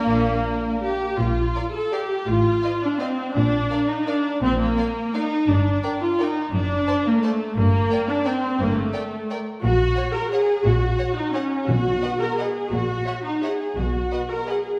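A lush, up-front viola section carries the accompaniment through this elegant, sweeping classical excerpt in 3/4, moving with rubato at 149-187 BPM in Bb major before shifting to B major at 9.6 s. Behind it, a focused studio violin section sings the melody and a soft-attack symphonic violin section adds an expressive second line, while distant cellos and expressive double basses anchor the bass. Oboe, dark clarinet, a hollow, airy flute ensemble, mellow bassoon and a tight French horn section sound only in the opening second, timpani enter at 11.7 s, and a recital hall reverb wraps the whole ensemble.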